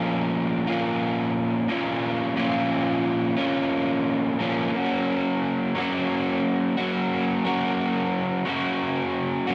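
In a straight 4/4 feel, this brooding, dark rock fragment cut from a longer piece features a lone overdriven electric guitar, bright, picked and double-tracked up front, moving from B-flat minor to G-flat at 4.7 seconds, bathed in moderate spring reverb with the character of a home cassette recording.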